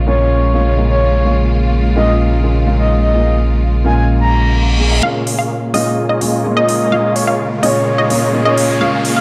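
A breathy, flute-like synth lead carries the melody with chorus and tape echo over a mellow concert grand piano, lush symphonic strings and a thick saturated sub bass in this anthemic, powerful festival progressive house excerpt at 127 BPM in Bb minor, where a reverse cymbal arrives at 4.3 seconds before a riser, huge detuned supersaw chords under a filter sweep and a punchy unison pluck playing arpeggios enter at 5.0 seconds for the build-up, joined at 5.3 seconds by crisp electronic hi-hats, the dark production sitting in a moderate scoring-stage reverb.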